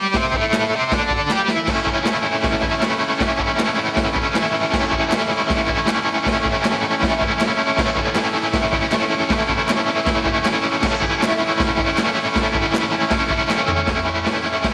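A biting, overdriven electric guitar riff with tremolo, double-tracked and up front, opens this rowdy, raw garage rock excerpt at 157 BPM in A major, tuned to A4 = 436 Hz, moving from A5 to A as a gritty, boomy acoustic drum kit in a pumping small room joins almost at once, with fills at 1.3 and 13.5 seconds, while crisp, dry group handclaps sit in the background under light reverb.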